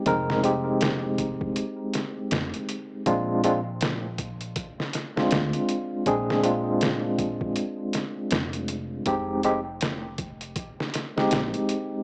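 A bell-like, barky tine electric piano sits up front, its tremolo and tape echo shimmering over a hypnotic, brooding trip hop groove at 80 BPM in F dorian, moving from Fm7 to Bb7 at 3.1 seconds and back to Fm7 at 9.1 seconds. Beneath it, a pitched-down, compressed sampler-style drum kit with a thumpy kick and medium-tuned snare swings its 16ths, while a woody pizzicato upright bass with tube saturation holds the low end. Light reverb and a dry, gritty, small-speaker sound give this 12-second cut from a longer piece a lo-fi, hardware-worn character.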